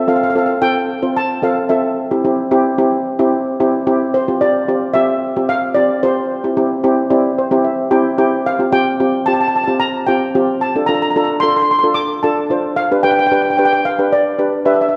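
Two steel pans begin together at 0.1 s in this bouncy, carefree calypso cut from a longer piece, moving at 111 BPM in a straight 4/4 in F major. An airy lead pan played with medium rubber sticks carries the upper melody up front, while a mellow set of double seconds struck with soft rubber sticks supplies the accompaniment beneath it through chords of F, C, Fsus2, Dm and G/D. A steel pan fill arrives at 6.8 s, and the shimmering metallic tones bloom in a wet concert-hall reverb.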